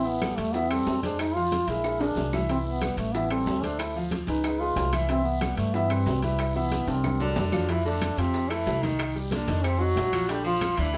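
A band playing live in one room, bathed in wet studio reverb, carries this sunny, sophisticated Afro-Cuban jazz excerpt, where a mellow, distant duduk sings the melody up front with vibrato over an intimate grand piano with audible action noise and a thumpy, woody pizzicato upright bass, while very quiet congas and tight, saturated bongos join ringing timbales, claves, raspy guiro and grainy maracas, before an edgy, forceful tenor saxophone with scooped notes enters at 7.2 s as a second line.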